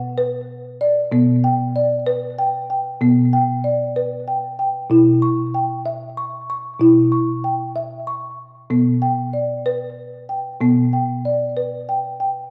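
Meditative and gentle, this brief excerpt from a longer world piece unfolds in B minor at 63 BPM in a straight 6/8, carried entirely by a solo folk marimba played with soft mallets across a range from B2 to C#6. The hardwood bars sound woody, rustic and round, sitting up front with a tape echo, while a wet echo chamber reverb with a 1.8-second tail and studio ambience surround them in a dark, warm production. The harmony rests on Bm, moves to Em/B at 4.9 seconds, and returns to Bm at 8.7 seconds.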